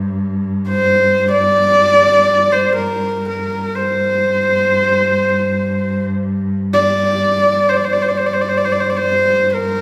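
A husky horsehead fiddle carries the melody up front, its bowed horsehair strings sounding intimate and close, with vibrato, a soft attack, portamento and an airy bow. It enters at 0.7 seconds and keeps to a narrow upper range, between Bb4 and D5. Beneath it, a single cello holds a focused, rich drone on G2 from the very start, bowed with vibrato and sitting well under the fiddle in level. This is Mongolian folk music in free time, with a windswept, solemn mood. The two players sound in a wet recital hall whose reverb lends the performance a spacious, resonant air, and the brief recording is cut from a longer piece.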